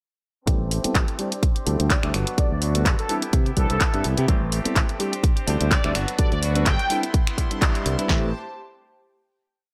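At 0.5 s a sensual, funky filtered disco house groove at 126 BPM in A dorian opens under a filter sweep, with a punchy four-on-the-floor kick, snare, claps, snaps and bright programmed hats, a growly syncopated fingered bass up front, bell-like rootless electric piano chords in a dotted rhythm, a twangy compressed clean guitar strumming sixteenths, and a very quiet, floating string pad, while a fat, detuned analog synth brass enters at 1.9 s with short chorused phrases trailed by dub echo, the bass, guitar, electric piano and brass all pumping and filtered until a band accent at 7.6 s leads into a final Am7 chord at 8.1 s.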